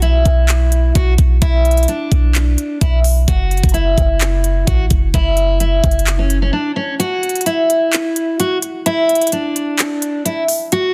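Melancholic, dark hip hop trap excerpt at 129 BPM in a half-time feel, tuned to A4 = 438 Hz, where a full-bodied picked steel-string acoustic guitar carries a low-pass filtered, delayed melody with audible finger squeak over a Bm to F#7(no3) progression, a deep, boomy sine 808-style bass sits up front until 6.5 s, and a trap kit of knocking kick, crisp hi-hats and handclaps drops out for a short break before returning at 7.0 s with the kick muted, all in digital ambience with a dense, heavily limited modern master.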